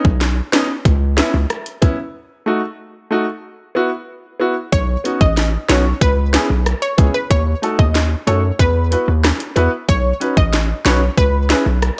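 A punchy, heavy 808-style bass drives this tough, bouncy dancehall excerpt at 93 BPM, sitting up front beside an electronic island pop drum kit with a tight kick and sharp snare re-recorded in a large room, while an intimate grand piano with audible action noise carries the Badd9, C#m7, D#dim and Esus2 changes through a break from 2.1 seconds, and a detuned, chorused analog pluck with a round, bright sawtooth tone takes the melody from 4.7 seconds inside a digital ambience.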